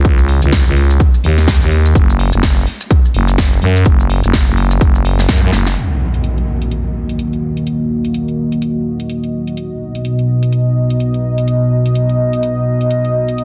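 A thick, growling FM bass with tube saturation and sidechain pumping opens this gritty, bouncy bass house excerpt at 126 BPM in Eb minor, swung on the sixteenths and driven by an overdriven, up-front electronic kick, a big-room dance kit of punchy snare and metallic hi-hats, and grainy, close maracas, until a drum fill at 5.5 seconds gives way at 5.8 seconds to an electronic impact and a deep, moody, detuned sawtooth pad with chorus and pumping that carries the Ebm and B chords alongside the kit to 13.4 seconds in a dense, heavily limited mix with light digital reverb.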